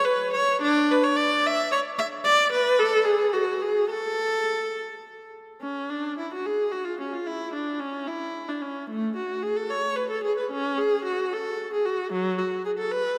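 Radiant and dance-like, this baroque-style suite movement for solo viola moves in a flexible, rubato 6/8 at 74 BPM in dotted quarters, opening in A major and turning to F# minor at 5.6 s. A single bowed viola, clear and focused with vibrato, sits close and up front, ranging from F#3 to E5 and tuned to A4 = 441 Hz. A long church reverb of 3.4 s surrounds the instrument in this short passage cut from a longer piece.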